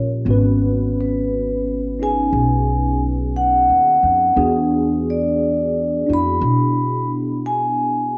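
Vibraphone, tine electric piano and upright bass enter together in this intimate, melancholic jazz ballad fragment, moving at a slow, swung pace from Abm7 to E9 over about 8.2 seconds. The vibraphone carries the melody up front with medium mallets and its motor off, its tone metallic, ringing and airy. Beneath it, the electric piano's clean, direct accompaniment is colored by analog chorus, while the pizzicato bass sounds woody and growly, all set in a wet spring reverb.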